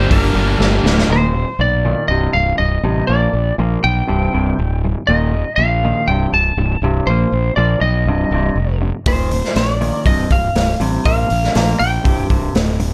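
Quiet-loud alternative rock in C minor at 121 BPM, this dark, cathartic passage is cut from a longer piece and opens with a brief, heavy burst. For the first second, two thick, bright fuzz guitars pound out a distorted riff, one sitting further back, while a raw garage drum kit plays a fill from 0.6 seconds and a barely audible tonewheel organ holds chords through a slow rotary speaker. At 1.1 seconds the texture thins, and a clean electric guitar enters, picking compressed arpeggios bathed in lush chorus, over chords moving through Eb5, Cm, Bb and C5. A growly, overdriven fingered bass stays up front throughout, and a slightly broken-up lead guitar carries the melody with slapback echo until 12.3 seconds. The saturated, gritty drums return at 9.1 seconds with a punchy kick, medium-tuned snare and hi-hat, their rolled-off top and pumping character set inside a small room ambience.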